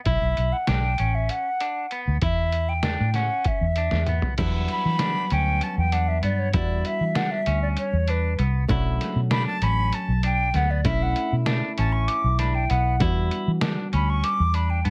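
Progressive instrumental band music in 7/8 at 195 BPM counted in eighths, this tense, intricate passage in E dorian is cut from a longer piece. A silver concert flute carries the melody from the start, its airy, straight tone and crisp attack set back at a distance, while a bright, scooped clean electric guitar picks arpeggios beneath it. A vintage muted fingered electric bass sits up front with a dark, round, foam-muted sound, and a lo-fi sampler-style drum kit, pitched down and muffled, lays down a thumpy kick and fat snare with hi-hat, toms and crash cymbal. The harmony moves from Bm7 to E5, and a drum fill at 3.9 seconds leads into a new section at 4.4 seconds, where the flute takes a solo over Em7 and Bm7 changes. At that point a hollow-body jazz guitar joins with compressed, picked accompaniment of a dark, clean cast, and light reverb gives the band a modest sense of space.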